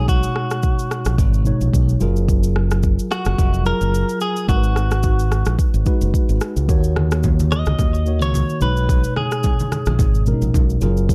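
Up-front, bright fingered electric bass anchors this mellow, smooth afrobeats excerpt, joined by an electronic afro-pop drum kit with a deep kick, rim click and shaker, a clean tine electric piano heard through its built-in speakers, a compressed, directly recorded guitar melody picked through digital delay, and low-tuned, saturated congas slipping into the background from 7.0 s, within a dark digital ambience.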